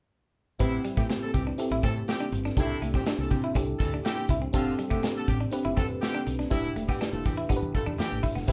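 Polished 1980s jazz-funk pop with a glossy, breezy mood, this short excerpt moves at 122 BPM in a straight 4/4 through a chord cycle of Am9, C6, F69 and Em7. An FM electric piano carries the accompaniment with a glassy, bell-like attack and decaying tones, touched by chorus and a faint noise layer, while a semi-hollow electric guitar plays a clean, fingered riff from 0.7 to 8.4 seconds. A woody fretless electric bass anchors the low end with a round, punchy, hollow-body sound. The modern studio drum kit sits up front with a tight kick, a medium-tuned snare and hi-hat, its sound smooth and dark with a rolled-off top. A tight horn section supplies a second line with pop-style vibrato, mixed lower than the keys and drums. The band sounds as if playing live together in one room, with moderate studio ambience around them.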